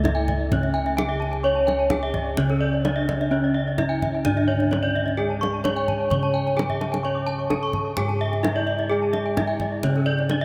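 Brilliant and hypnotic, this Balinese gamelan excerpt at 129 BPM in straight 4/4 and C# pelog sets a ringing bronze metallophone melody with shimmering paired-tuning beats over a mellow, padded metallophone accompaniment in the background. Two bright horn-mallet metallophones spin arpeggios, one mid-forward with slapback echo and one airy. Round, beating bossed gongs sit up front on the bass line, and a deep kendang adds a fill at 6.7 seconds, all washed in the long reverb of a vast, echoing cathedral.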